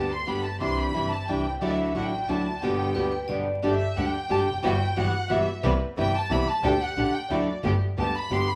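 Tango in 3/4 at 179 BPM with a rubato feel in G major, this melancholic, sultry fragment of a longer piece puts a lush, expressive bowed violin section up front on a smooth-topped line with soft attack, over a full-bodied fingerpicked nylon-string guitar and an earthy, nasal bowed double bass. A dark, veiled con sordino string section plays stabs in the background. A bright, metallic vibraphone struck with hard mallets rings out briefly from 2.9 to 3.6 seconds, all captured as a band playing live in one room with moderate studio reverb and a layer of vinyl crackle.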